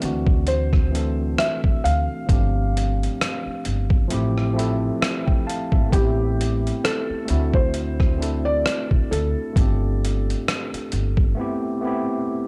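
Lo-fi hip hop at a slow 66 BPM with a lazy 16th-note swing, this melancholic, reflective excerpt from a longer piece pairs a soft, felt-muted upright piano melody with a worn, slightly out-of-tune tine electric piano accompaniment, both low-pass filtered and warm, moving through D7, G9sus4, Fmaj7/A and Am7 before settling on Am9. Underneath, a woody, growly pizzicato upright bass with tube saturation sits up front beside a gritty, compressed sampler-style kit of thumpy kick, hi-hat and rim click. The electric piano adds a short fill at 4.6 seconds, and the drums drop out at 11.4 seconds, leaving the dry, gritty recording to close on the keys alone.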